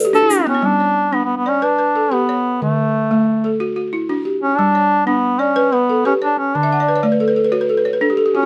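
Rolling in a straight 12/8 lilt, this hypnotic, joyful West African traditional piece is cut from a longer performance, with a woody, dry balafon played with rubber mallets spinning buzzing arpeggios up front over chords that alternate between D and G. A clear duduk enters at 0.1 seconds to carry a solo, folk-style melody full of scooped notes, also placed up front, while the balafon adds fills at the opening and again from 6.6 seconds. A moderate small-room reverb gives the pair a close, intimate sense of space.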